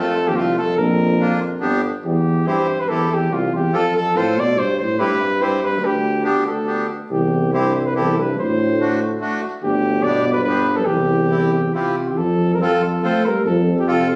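Festive and jolly, this short cut from a longer alpine folk piece for dance band moves in 3/4 at 143 BPM, played with a rubato feel in C major. A punchy, warm flugelhorn carries the melody up front in a classical style, while a dark, soft-attacked euphonium sits close and present beneath it as a second line. A reedy single-reed accordion with dry tuning fills in the accompaniment, clear and mid-forward. A mellow tuba with light vibrato supplies the bass from a distant, roomy position, sounding at the start, dropping out at 1.9 seconds and returning at 7.1 seconds. The harmony moves through simple changes such as C, G and D7 before landing on F at 12.2 seconds, all heard in a moderate recital-hall reverb with the compressed character of a phone recording made in the room.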